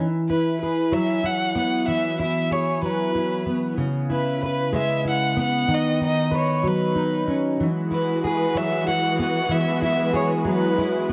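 Pop in a heartfelt, swaying 6/8 at 63 BPM in E major, this short excerpt cut from a longer piece opens on a double-tracked, fingerpicked plugged-in steel-string acoustic guitar with a full-bodied, jumbo tone sitting up front. A clear violin carries the melody from 0.3 seconds, its bowed line focused and close with vibrato, staying between B4 and F#5. The harmony moves from Eadd9 to C#m7 and Badd9/D#, returning to Eadd9 at 7.6 seconds, where a muted symphonic string section enters with sustained, con sordino chords that sound dark, veiled and lush. The guitar ranges from C#3 to B4 beneath the melody, while the section adds a smooth-topped ensemble layer underneath. Light reverb and a small room ambience give the sound an intimate setting.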